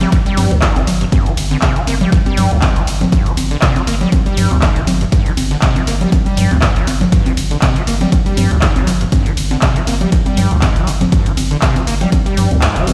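A squelchy, resonant sawtooth acid bass riff with overdrive, chorus, delay and sidechain pumping opens this raw, trippy, swung acid house excerpt over a deep, saturated triangle sub bass. Punchy analog drum-machine congas, cabasa, handclaps and hi-hat sit up front, with a gritty, compressed sampler-style ride and snare in the background. A punchy electronic kick enters at 0.1 seconds and drops out at 12.6 seconds on a band accent, all heard as if played on a big sound system in a bare stone room.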